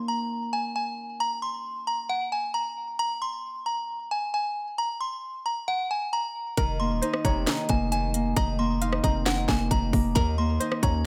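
A delicate, tinkling FM tine bell carries the melody up front with chorus and tape echo, over a bright, fingerpicked Celtic harp that rings until 2.4 seconds, giving this melancholic, dark trap excerpt at 134 BPM in a half-time feel a fragile opening. At 6.6 seconds the harp returns on an F7sus4 chord as a hard-hitting sine 808 bass with a punchy, heavy attack arrives, along with an electronic trap kit of hard-clipped kick, sharp snare, crisp hi-hats, rim clicks and handclaps. A twangy, string-like resonator pluck with a sawtooth edge and a moving notch filter sits in the background as a second line, and the harmony settles on Eb5 under light reverb and digital ambience.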